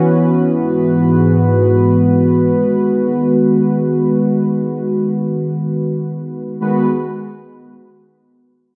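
Nostalgic and moody, this synthwave fragment drifts in free time in G# minor, tuned to A4 = 439 Hz, cut from a longer piece. A single warm analog pad, smooth and mellow with detuned sawtooth tones, a slow attack and chorus, sits up front holding sustained chords from F#7sus4 through Eadd9/G# to G#m7, with a filter sweep running over it until 6.6 seconds. A lush hall reverb and a dark production surround the pad until it stops at 6.9 seconds.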